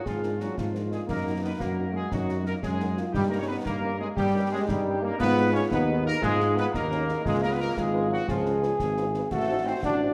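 A stern, martial march for wind band in 6/8, cut from a longer piece, opens at once with the trumpet section carrying the melody in a warm, classically styled tone with light vibrato and soft attack. Beside it, a clear, punchy solo euphonium sings a second line from a distance, while the trombone section holds mellow, smooth-topped sustained chords beneath. An up-front solo tuba enters at 0.1 seconds on the bass with light vibrato, joined by concert snare, bass drum and clash cymbals whose dark cymbals sit in a live room. At 0.2 seconds a very quiet, dark and tight French horn section adds distant accompaniment. Moving at 117 dotted-quarter beats per minute in Eb minor, the harmony passes from Bb7 over Ab through Ebm, Abm and Db7 to a closing Adim7, all set in a wet recital hall reverb.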